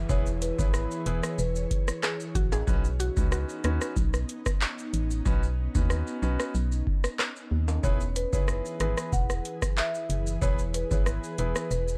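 A straight dancehall beat from a booming analog drum machine, with a deep kick, metallic hi-hats, handclaps, rim clicks and shaker, drives this sunny, summery excerpt, and its hats fall silent from 5.3 to 7.8 seconds while acoustic maracas and timbales sit low underneath. A hollow, dark, organ-like FM bass sits up front beside a clear, polished grand piano accompaniment and a mellow, ethereal pad, both pumping with sidechain compression, as a very quiet downlifter sounds through the opening seconds. A marimba melody with tape echo plays at the start and returns at 7.8 seconds, a woody, bright synth pluck adds a brief second line in between, and the whole track has a dry, gritty cassette character.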